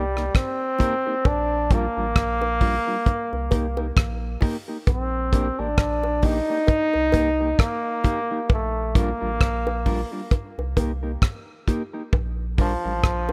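A bright solo trombone carries the melody in this sunny, uplifting roots reggae excerpt, its scooped notes sounding roomy and trailed by dub echo over a swung groove that alternates between Cm7 and Bb6. A dark, clean, fingered electric guitar with its own dub echo and a deep, round sub bass support it, while a dry 70s drum kit with a tight kick, hi-hat and rim click comes in at 0.2 seconds and high-tuned bongos played with soft hands join at 0.8 seconds in the background. The rough home demo mix sits in a small room with light reverb.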